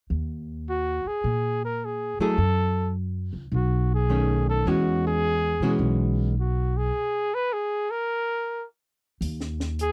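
A dry, close studio sound in a 1970s style frames this brief swinging jazz clip, cut from a longer small-group swing and bop piece in Eb phrygian at 105 BPM with a swing feel on the eighths and a late-night mood. A woody, pizzicato upright bass with steel strings sits up front from the start, and a trumpet joins at 0.7 seconds, soloing with light vibrato and a smooth top. An archtop guitar, miked and amplified, adds dark, clean, picked hollow-body accompaniment from 2.2 to 6.3 seconds as the harmony moves through Gbm, B9 and E69. A stop begins at 6.9 seconds, and near the close a compact cocktail kit appears at 9.2 seconds, with hi-hat and a high-tuned snare sounding quietly.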